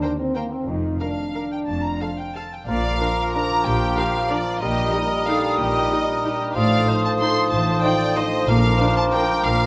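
A close, detailed recording in a moderate recital-hall reverb captures this elegant, sweeping orchestral ballroom waltz in Bb major, cut from a longer piece and moving at 185 BPM in 3/4 with uneven, rubato beats. Veiled, con sordino strings carry it, with the muted violins singing the melody over a softer second violin line and a very quiet viola accompaniment, while warm French horns sustain chords and a ringing, fingerpicked harp arpeggiates in the background. Muted cellos and double basses take the bass from 0.7 seconds, and at 2.7 seconds a dark cor anglais, a pure, distant silver flute and a mellow bassoon join, before a brief, very quiet touch of hard-mallet timpani arrives at 8.5 seconds on the return to Bb.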